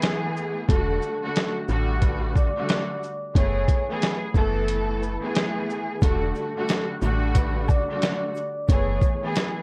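Muted, veiled strings, bowed with vibrato, open this reflective boom-bap excerpt at 90 BPM alongside a gritty, compressed sampler-style drum kit with a thumpy kick, medium-tuned snare, hi-hat and shaker, swinging in 4/4 in E dorian over minor eleventh chords. At 0.7 seconds a woody, round FM bass enters with a fast attack, and a mellow vibraphone played with soft mallets carries the melody, its fast motor vibrato ringing through slapback echo and plate reverb. From 6.0 seconds a close, dry egg shaker and woodblock sit in the background, while the whole recording carries the worn, warbling pitch drift of old cassette tape.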